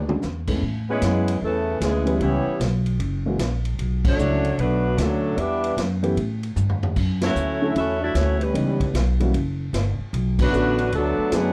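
A swinging 4/4 pulse at 151 BPM drives this brassy big band jazz excerpt in A major, with a drum fill at the very start and another at 6.6 seconds, and band accents landing at 4.0, 7.2 and 10.3 seconds. A mellow saxophone section carries the melody with vibrato and a soft attack, a vintage-toned trombone section plays a second line beneath it, a woody pizzicato upright bass anchors the low end, and a dark upright piano comps on chords moving from Amaj9 through C#m7b5, F#7 and Bm11 to Dmaj9. The drum kit sits distant and roomy with a boomy kick and a rolled-off top, and light reverb surrounds the ensemble.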